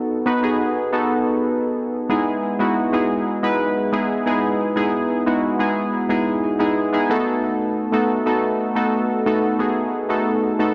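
At a straight 90 BPM in 4/4, this short pop excerpt cut from a longer piece unfolds in E major with a nostalgic, glossy mood. A single part carries the whole recording: warm analog keys playing solo from 0.0 to 10.7 s, ranging from G#3 to B4 and sitting up front in the mix. Their tone is round and warbling, with a vintage sawtooth character, a filter sweep, a fast attack and a decaying tail, colored further by chorus and tape echo. The harmony opens on B7, settles onto Emaj7 at 2.1 s, and returns to B7 at 7.1 s. A moderate, lush hall reverb with a 2.8-second decay surrounds the keys, and the tuning sits slightly low at A4 = 438 Hz.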